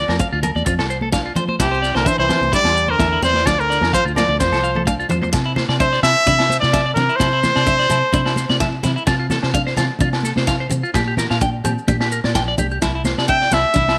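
A bright, up-front trumpet carries the melody over a short-lived, mellow trombone line with light vibrato and a twangy, slightly broken-up electric guitar playing arpeggios through slapback echo, all set in a sunny, carefree highlife guitar band groove at 128 BPM in C mixolydian with a gentle swing. Underneath, a round, dark fingered bass and a vintage kit with a punchy kick and rolled-off top drive things along, while ringing agogo bells, damped high-tuned congas, grainy maracas and a full-bodied picked steel-string acoustic guitar sit in the background under light studio reverb. A drum fill at 4.4 seconds leads into the second section, where the trumpet drops out at 8.6 seconds before a brief return at 13.3 seconds as this cut from a longer piece ends.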